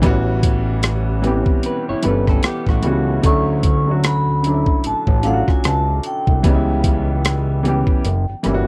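The soft-malleted vibraphone enters at 3.3 seconds to carry the melody with a mellow, ringing tone, slow motor vibrato and a slapback echo. Beneath it, this short excerpt of smooth, late-night R&B and neo-soul moves at an unhurried pace with a swung sixteenth-note feel, as a woody, slightly detuned upright piano supplies the chords. A fat, saturated analog bass with a nasal sawtooth edge sits up front alongside a compressed, gritty, sampler-style boom bap kit of hi-hat, thumpy kick and rim click. Briefly, between 1.7 and 3.2 seconds, an electric guitar through a small old amp adds a slightly broken-up, lo-fi second line. The harmony drifts through lush extended chords, and the whole has the dry, close sound of a 1970s-style studio lightly touched by digital ambience.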